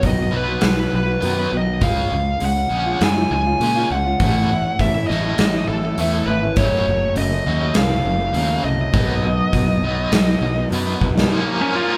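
A roomy, live-band sound with moderate large-studio reverb frames this angsty, cathartic excerpt of quiet-loud alternative rock at 101 BPM in 4/4, played in half time over a punchy, up-front drum kit with a medium-tuned snare in a bright stone room and a drum fill at 11.0 seconds. A high-gain lead guitar carries the melody up front, while a boxy fingerpicked acoustic archtop plays arpeggios, a bright overdriven electric guitar drives a riff with tremolo, and a growly fuzz bass with overdrive anchors the low end through chords moving from B to Db, A and Gbm. At 11.3 seconds a soft-attack string section enters in the background with sustained sul tasto chords and light vibrato as the harmony turns to Bbm.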